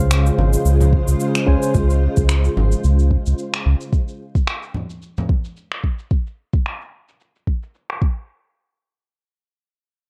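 A dark production with light reverb frames this relaxed, smooth sunset chillout excerpt, cut from a longer piece at 110 BPM in 4/4 with a swung sixteenth-note feel. It opens on a Dbmaj7 chord, where a barky, bright tine electric piano with medium tremolo and digital delay sounds briefly through a combo amp, stopping at 1.8 seconds. A silky, vintage string machine with ensemble chorus holds soft sustained chords beneath it, and a round, deep analog bass with a fast attack sits up front under a filter sweep, both lasting until the harmony drops out at 3.9 seconds. Overdriven electronic finger snaps and shaker, layered and re-recorded in a large room, run under a filter sweep, joined by ringing congas played with hard hands in a small room. A soft, tape-warm electronic kick enters at 0.9 seconds and stays up front through the close.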